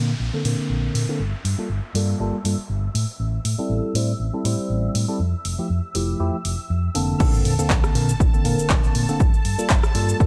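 This funky, joyful slice of filtered disco house opens on a clean tine electric piano, up front and played through a combo amp, laying down chords from Bbmaj9 to Gm9 with phaser, a low-pass filter and sidechain pumping. Beneath it sits a dark, round hollow-body electric bass with tube saturation, while a lush string machine holds sustained, chorused chords high above, its slow-attack sawtooth tone bright and full. A punchy analog drum machine comes in at 0.5 seconds with dry handclaps, hi-hat, rim click, shaker and crash, its hats, cymbals and percussion pumping with sidechain compression. A downlifter with a sub drop accompanies the filter sweep through the opening bars. At 7.2 seconds the drop arrives with an impact and a dry, up-front electronic kick, and the swung groove settles in over digital ambience as the piece is cut off.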